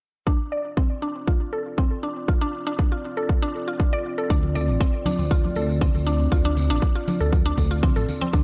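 At 0.3 s this hypnotic, driving afro house excerpt at 119 BPM in D minor begins with a punchy, up-front electronic kick together with a dark, moody analog pad holding a Dm7 chord and a woody, round mallet-like synth pluck whose arpeggios carry chorus, analog delay and a filter sweep, both pad and pluck pumping with sidechain compression. At 4.3 s a deep, rumbling detuned saw bass arrives with a jingly vintage tambourine, and bright hard-hand congas sit in the background from 4.4 s. The mix is echo-heavy with light reverb.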